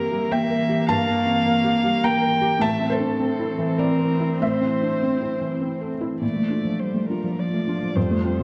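A felt-muted upright piano, a muted violin, a muted cello and an airy synth pad enter together in this fragile, reflective neoclassical fragment, cut from a longer piece. The piano sounds mellow and intimate, its action noise audible up front. The violin carries the melody close by, con sordino and veiled, with vibrato, a soft attack, portamento and a smooth top, while a single cello bows a dark second line from further back. Beneath them the ethereal pad holds sustained chords, its detuned sawtooth and triangle layers and noise layer blurred by a slow attack, long release, ensemble chorus and its own reverb. In a triple metre with an uneven, rubato pulse, the harmony moves from Edim over G to A minor at 2.6 seconds, then turns to Bbmaj7 as a new passage begins at 6.2 seconds. A recital hall reverb surrounds the group in a warm production.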